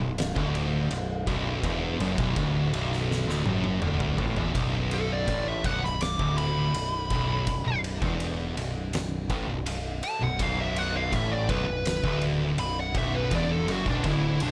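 Sludgy and hypnotic, this stoner and doom metal excerpt grinds through a 4/4 riff played by two thick fuzz guitars, one very quiet, and a bright, double-tracked tight distorted guitar in the background, with a growling picked electric bass adding overdrive and tube saturation underneath. An oversized low-tuned drum kit joins at 0.2 seconds with a punchy kick, fat snare, dark cymbals, toms and ride in a gritty, pumping stone room, and a drum fill from 3.1 seconds leads into the next section. At 4.9 seconds a compressed, up-front fuzz lead guitar with digital delay takes a solo high above the low riff, framed by light small-room reverb.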